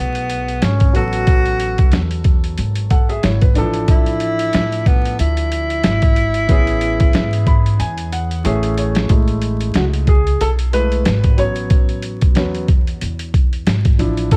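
Gritty, compressed boom bap drums sit up front in this smooth, cool jazz-hop excerpt, their pitched-down sampler sound and thumpy kick wrapped in vinyl crackle and a dry room. A breathy tenor saxophone carries the melody in a mellow, whispered subtone with vibrato and scooped notes until 8.4 s, while a woody pizzicato upright bass holds the low end beneath an intimate vintage upright piano with audible action noise. After a drum fill, the piano takes a solo from 9.1 s.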